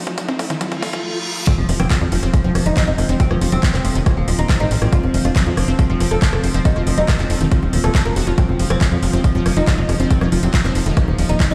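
A straight 4/4 pulse drives this alien, hypnotic psychedelic trance excerpt, opening with a short build-up where an electronic kick and a techno kit of handclaps, metallic hi-hats and rim clicks play a fill under a riser and reverse cymbal, while a detuned, lush unison pluck riff and a resonant, wave-folded drone of sustained chords with moving overtones pump in the background. At 1.5 s the drop lands with an impact as a woody, plectrum-plucked fretless oud takes the melody through phaser and digital delay, and a moment later a tight, driving sawtooth sequencer bass with ring modulation joins the punchy, up-front kick. The whole thing sits in a large, bare-room reverb as if played on a big sound system.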